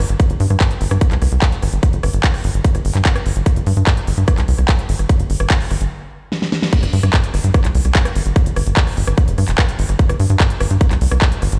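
A straight, driving pulse powers this intense, psychedelic trance excerpt, where a punchy, up-front electronic kick and a tight sequencer bass with a plucky filtered sawtooth bite sit under a big-room kit of huge snare, crisp hats, handclaps, rim clicks and crash, all heard as if played through a big sound system in a bare stone room, until a stop at 5.9 seconds and a short drum fill lead into the drop at 6.7 seconds.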